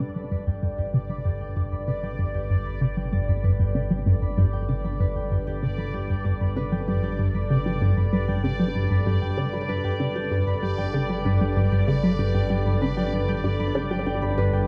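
Cosmic and luminous, this ambient excerpt at 96 BPM in G major sets an up-front, squelchy resonant blip pluck riff over a fat analog bass, an evolving sweeping resonant pad and a fading-in ringing concert harp playing arpeggios, while a bubbling stepped-filter texture sustains alongside, all held on a G chord and bathed in a huge ambient reverb with a dark production.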